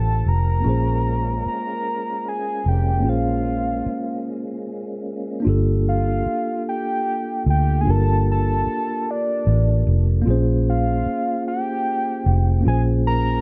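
A lightly reverberant, late-night R&B excerpt in a slow six-eight at 50 BPM carries a yearning mood, built on a dark, round, foam-muted electric bass that sits punchy and up front beneath a mellow, clean tine electric piano. A soft synth lead, full and sine-like with a sub-octave layer, chorus and vibrato, sings the melody over chords moving between Gm9 and Bbm9. From 0.6 to 5.4 seconds a fat, lightly overdriven tonewheel organ adds sustained chords with key click, percussion and a slow rotary swirl, bowing out after a break at 4.2 seconds as the second section begins.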